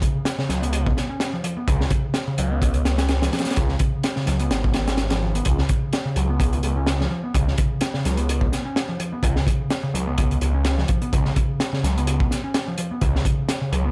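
A swirling, detuned saw bass sits up front from 0.5 seconds, its thick, phased tone holding low notes beneath a crunchy breakbeat drum kit with a high-tuned snare, a tight kick and a gritty, rolled-off top. This funky, swaggering breakbeat excerpt moves at 127 BPM with a light swing on a single C#7 chord, while an overdriven picked electric bass adds a round, dark riff through tube saturation and digital delay. The parts sit in a small room ambience, and the piece is cut from a longer track.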